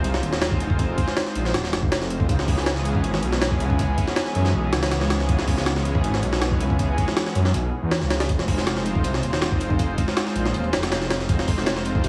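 At 160 BPM in a straight 4/4, a pitched-up jungle sampler kit drives this nostalgic, raw drum and bass excerpt up front, its thumpy kick, high-tuned snare and hi-hat pushed through overdrive, while a very quiet, dusty soul sampler kit with a fat snare and hi-hat slips in beneath it at 8.3 seconds. A menacing detuned saw bass, thick and beating with a saturated edge, sits up front under a lush, warbling vintage unison pad that holds slow-attack chords with chorus, moving from Fm7 to Dbm7 and back to Fm7. The whole piece carries a heavily compressed radio sound with vinyl crackle, studio ambience and light reverb.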